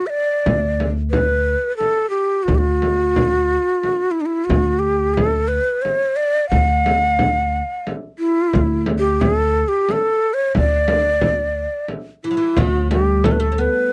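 A dry, close studio sound in a 1970s style frames this short cut from a longer Arabic maqam ensemble piece, passionate in mood and moving in a straight three-beat metre. A breathy, end-blown ney of reed cane carries the melody from the very start, sitting up front with vibrato and tongued notes. Beneath it, a pizzicato upright bass on gut strings gives a thumpy, woody low line, also close and present. A large frame drum adds vintage, band-limited percussion. At 12.2 seconds a fretless oud joins on a second line, its plectrum-plucked double strings sounding deep and warm as the passage closes.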